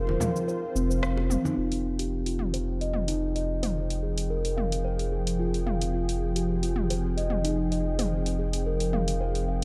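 Hypnotic and warm, this organic downtempo passage in F minor moves at 110 BPM with a light sixteenth-note swing, with a round, up-front steel tongue drum playing meditative arpeggios through 12-bit sampler grit, low-pass filtering and delay, gaining a filter sweep from 1.6 seconds. Beneath it a deep, nasal analog bass holds the low end, and a smooth, detuned sawtooth pad sustains chords with chorus. Ringing acoustic bongos and congas appear only from 0.1 to 1.6 seconds, while a layered, overdriven deep house kit of hi-hat, rim click, shaker and toms carries on under a dark production with light reverb.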